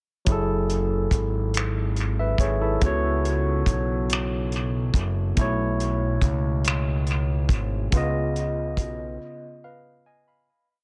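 Yearning and late-night, this slow six-eight R&B piece moves at 47 BPM in F# dorian through F#m9, C#7sus4, B9sus4 and C#9, set in an echo-heavy mix with light reverb and studio ambience. A bright, barky tine electric piano holds spread-voiced chords through a combo amp, with short fills and dub echo. Beneath it, a fat, detuned analog bass of sawtooth and square-wave tones plays a slow, sliding line through a filter sweep with a moving notch, while a cloth-damped, thuddy small-room kit with a tight kick, hi-hat and finger snaps, its top rolled off, carries dub echo of its own. The piece fades out from 7.9 s, and once the bass stops at 9.2 s the electric piano rings on alone until 10.7 s.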